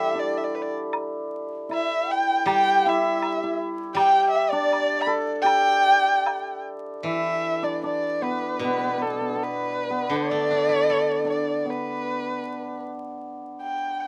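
Pastoral and graceful, this Chinese traditional chamber piece unfolds in a rubato 2/4 at 78 BPM in G gong mode, with a dark, woody solo erhu carrying the melody up front with vibrato and portamento. A shimmering, ringing hammered dulcimer also sits up front as a second line, while a mellow, hollow large dizi with a buzzing membrane adds an airy bamboo voice in the background until 6.6 seconds, and a close acoustic woodblock joins at 0.9 seconds. A bright, silvery steel-string zither played with fingerpicks gives accompaniment until 12.4 seconds, and the whole passage, cut from a longer piece, sits in light reverb with vinyl crackle.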